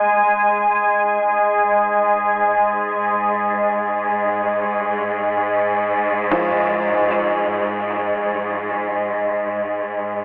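In free time, this peaceful, luminous ambient fragment, cut from a longer piece, rests on an up-front, detuned organ-like drone with ensemble chorus, beneath which a lush, bowed cello section fades in over the full 10.2 seconds on Fm/Ab, while a woody kalimba rings out arpeggios in the background with diffuse ambient delay from 6.3 to 7.5 seconds, all soaked in a huge reverb with a dreamy, telephone-like sound.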